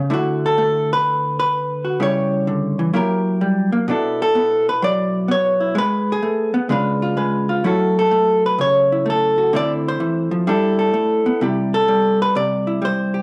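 Solo jazz guitar with a swinging, sophisticated mood, this short cut from a longer piece features a vintage hollow-body electric guitar playing alone throughout, its tone dark, clean and compressed, with picked notes sitting up front. The harmony moves through rich extended and altered chords such as D69, F#7b9 and Bm11, shifting into a new section at 3.9 seconds that closes on G69 and Cadd9. A moderate spring reverb and the grain of a home cassette recording give the guitar a homemade, vintage character.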